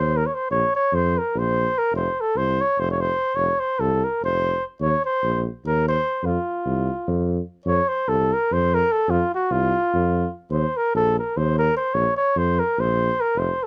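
The recording has a dark, dry sound, with little reverb, in this short cut from a longer Balkan folk piece that feels bittersweet yet fiery. A mellow flugelhorn carries the melody in a classical style, while a roomy, warm tuba holds down the bass beneath it, both close in the mix. The tune moves in a straight 7/8 at 294 BPM counted in eighths, stating its opening phrase and then repeating it from 7.7 seconds.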